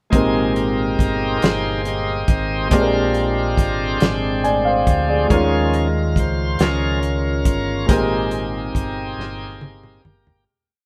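A bright, shouting tonewheel organ, lightly overdriven through a slow rotary speaker, leads this uplifting, reverent slow gospel piece in 6/8 at 46 BPM in Ab major, soloing over a grand piano's natural held drop-two chords dotted with grace notes and short fills, a round, punchy fingered electric bass and a dry, dark soul drum kit with a fat snare and tight kick, the band playing live in one stone room with moderate reverb as the piece fades out from 7.9 seconds and a drum fill enters at 9.2 seconds.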